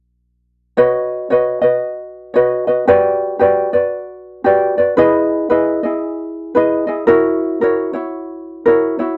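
The recording is dry and close, with a 1970s studio character and only a light touch of reverb. This short cut from a longer Hawaiian piece sits at an easy 114 BPM in 4/4, its eighth notes swung for a relaxed, languid sway in B major. A single acoustic ukulele, thumb-plucked and placed up front, carries the accompaniment from 0.8 to 9.2 seconds, its tone warm and light within a compact range from E4 to D#5. The harmony moves gently through Badd9, Gmaj7, Emaj7 and F#7, giving the phrase a soft, relaxed colour before it ends on the dominant.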